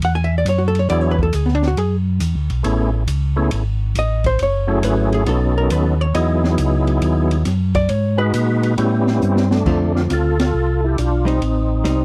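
A dry, close 1970s-style studio sound with light reverb frames this late-night, bluesy soul jazz organ trio, cut from a longer piece and swinging at 137 BPM in 4/4. A mellow tonewheel organ carries the bass line from the start, its round, clean tone shaded by chorus vibrato and a slow rotary speaker. A clean, compressed hollow-body electric guitar with a dark, picked tone sits up front and takes a solo through the opening section. At 0.9 seconds a second, percussive tonewheel organ enters with the melody, its full, lightly overdriven voice coloured by second-harmonic percussion, chorus vibrato, slow rotary and a slapback echo. The acoustic drum kit sounds set in a small room, with dark cymbals, a high-tuned snare and a boomy kick, and it plays a fill at 9.2 seconds before the band hits an accent at 10.3 seconds. The harmony moves through rich seventh and ninth chords, shifting to darker minor colours as the next section begins.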